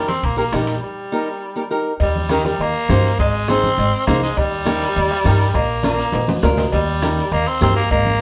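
This joyful, festive cumbia opens with a raspy, gritty tenor saxophone carrying a second line up front with vintage vibrato, alongside a bright, fingerpicked flamenco guitar whose fresh strings let a finger squeak through. Congas, guiro, timbales with cowbell, bombo and a woody pizzicato upright bass join almost at once. The congas have a thick skin, the timbales and cowbell ring with a compressed, saturated metal edge, the bombo thumps under a soft beater and the guiro sits distant. A break runs from 0.8 to 2.0 seconds, and a drum fill arrives between 6.1 and 6.7 seconds. The band sounds like it is playing live in one room, wrapped in a wet studio reverb, and the guitar drops out at 7.8 seconds just before this short cut from a longer piece ends.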